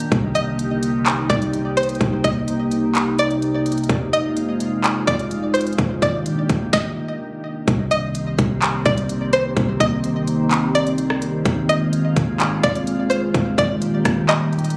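A half-time trap groove drives this melancholic, hazy cloud-rap passage, its electronic kit up front with a hard-clipped kick, sharp snare, crisp hats, handclaps and rim clicks, and the music halts briefly from 6.7 to 7.7 seconds before resuming. A deep, boomy 808-style sine bass sits under a glassy, ethereal FM pad that holds sustained Cm7, Fm7 and Ebmaj7 chords through ensemble chorus, built-in reverb and sidechain pumping. Above them a bright, twangy, string-like resonator pluck carries the melody with chorus and tape echo, all heard as if caught on a phone in a compressed club room.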